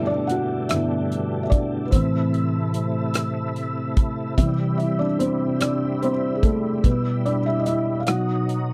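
A slow six-eight pop ballad at 49 BPM, this brief cut from a longer piece feels dramatic and melancholic, with a felt-muted upright piano taking a solo in a soft, dark, intimate tone, placed up front. An overdriven tonewheel organ holds gritty sustained chords colored by chorus vibrato, audible key click and a slow rotary speaker, while a natural country drum kit enters at 0.3 seconds with hi-hat, punchy kick and rim click. The dry, close 1970s-style studio sound moves through Gadd9, Am, C and Em/B before landing on B.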